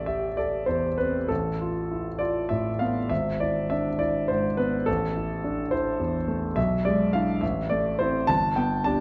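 A clear, intimate grand piano opens alone on an A minor chord, its action noise audible and its long sustain ringing up front in a dark recital-hall space with a wet reverb tail. This is a passionate, stormy romantic character piece in 6/8, moving with free rubato at roughly 63-73 BPM in dotted quarters, and it spans from G1 up to A5. The harmony passes through Dm69/A and E7/G# before returning to A minor at 7.4 seconds and touching G as this fragment of a longer work breaks off at 9.0 seconds.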